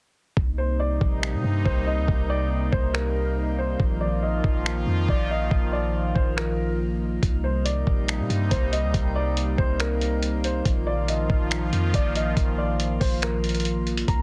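A half-time 4/4 groove at 140 BPM anchors this spacious, melancholic cloud-rap piece in C minor. Its lo-fi sampler-style kit of finger snaps and a thumpy kick sits up front with a muffled, pitched-down, small-room character, and the hi-hats join only after 7.2 seconds. A deep, boomy 808-style bass with a noise layer and a dark, decaying tone carries the low end. Above it, an evolving sawtooth pad holds bright, chorused chords that alternate between Cm7 and Bbsus4, pumping against the sidechain. A soft, felt-muted upright piano plays an intimate, mellow melody through a low-pass filter and tape echo, while a very quiet glass-harmonics texture adds glassy, drifting overtones with chorus and built-in reverb. At 14.1 seconds a low-pass-filtered Celtic harp rings out a single fingerpicked arpeggio note, and the whole mix carries a heavily compressed, radio-like digital ambience.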